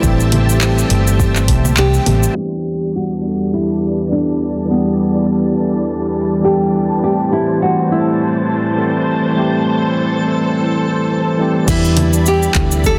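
Wistful and relaxed, this 103 BPM sunset chillout excerpt in E minor swings gently over Am7 and Em7 as a bright, fingerpicked nylon-string guitar carries the melody with audible finger squeak and digital delay, a clean, up-front tine electric piano comps with its own delay, and a silky string machine holds slow-blooming chords through ensemble chorus, while a dark, round, foam-muted fingered bass, a deep tape-warm electronic kick and a low-pass-filtered smooth R&B kit with congas, crash, handclaps, hi-hat and shaker drop away after the opening couple of seconds, leaving a filter sweep through the middle and a faint twinkling granular shimmer from 4.3 s until the groove returns at 11.7 s, all set in a lush hall reverb with a dense, heavily limited modern finish.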